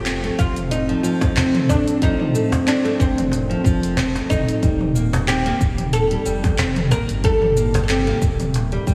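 Organic downtempo at 92 BPM in 4/4, this short excerpt, cut from a longer piece, has a mystical, meditative mood with a gentle swing on the sixteenths. A woody, plectrum-plucked oud with double strings carries the melody through an analog delay, while a fingerpicked classical nylon-string guitar plays arpeggios beneath it, also touched by analog delay. In the background, a warbling, detuned tape-like pad holds nostalgic, lo-fi sustained chords with chorus and its own reverb, its sidechain pumping shared with a round, sine-like sub bass. A deep house kit adds dark hats, cabasa, handclaps and toms from 0.1 seconds, a deep layered electronic kick joins at 0.4 seconds, and a snappy cajon enters at 1.2 seconds from further back. The harmony moves from F7 to Cm7/Eb at 4.6 seconds, and the whole mix feels dreamy, soaked in a lush hall reverb over a small room ambience.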